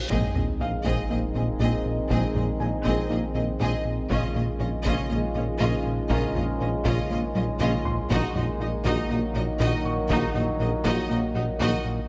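Set to a straight 4/4 pulse at 120 BPM, with a taiko ensemble drumming and a fill at 7.4 seconds, this brooding, futuristic passage from a hybrid orchestral and electronic film score opens on a reverse cymbal and sub drop impact alongside a deep sub bass, a round analog bass riff, a moody, detuned synth pad, soft plucked arpeggios, a clear baby grand piano, sustained French horn and trombone chords, a dark tuba, very quiet cello and double bass sections, a viola section accompaniment, and a focused violin section carrying the melody over a lush second violin line, set in a moderate concert hall reverb over the chords Ab/Bb, Dbadd9/Bb and Ebm/Bb.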